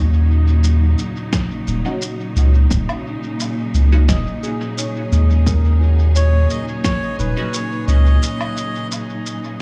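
A round, deep sub bass sits up front through this meditative, hazy ambient dub excerpt in Eb minor at 87 BPM, with lightly swung 16ths and an Ebm7 harmony, beneath lush, dark bowed strings with vibrato and portamento and ringing, airy handpan arpeggios carrying tape echo. A muffled, pitched-down shaker, snare and woodblock with dub echo enter at 0.6 s, followed by an overdriven electronic kick at 1.3 s and a very quiet, nasal filtered chord stab with a phaser at 1.9 s. A reedy, breathy melodica melody with dub echo arrives at 6.2 s, and after the bass stops at 8.2 s a short break closes the excerpt in small-room ambience.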